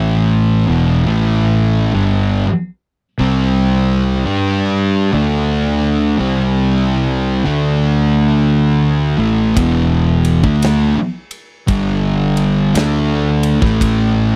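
Sludgy and heavy, this stoner and doom metal excerpt, cut from a longer piece, grinds along with a loose swing as two dark, distorted fuzz guitars pick out the riff through power chords on A, E, C, G and D, one guitar up front and the other sitting in the background. A growly, overdriven fingered bass stays bright and up front beneath them. At 9.6 s a big rock drum kit joins with a punchy kick, ride cymbal and a medium-tuned snare, its rolled-off top and big-room sound set against an otherwise dry, close 1970s-style studio recording.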